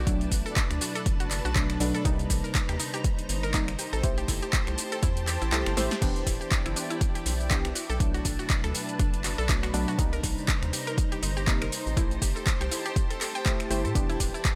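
An overdriven electronic kick drum sits up front in this deep, hypnotic deep house excerpt at 121 BPM, its deep thump joined by a layered kit of punchy snare, metallic hi-hats, shaker, handclaps, finger snaps and crash cymbal, all with a touch of small room reverb and a 16th-note swing. Underneath, a rubbery square bass bounces with a hollow, wave-folded tone and tube saturation, pumping against the kick alongside the other melodic parts. Mellow analog keys play detuned sawtooth stabs with chorus and dub echo, while a woody, mallet-like synth pluck runs bright arpeggios through digital delay from 0.5 seconds. In the background, a silky string machine holds sustained chords with ensemble chorus, and a cloudy granular pad drifts through its own reverb. The harmony cycles through Bm7, Cm7, Am7 and Em7, and the kick drops out briefly at 5.5 seconds as a drum fill lands before the groove returns.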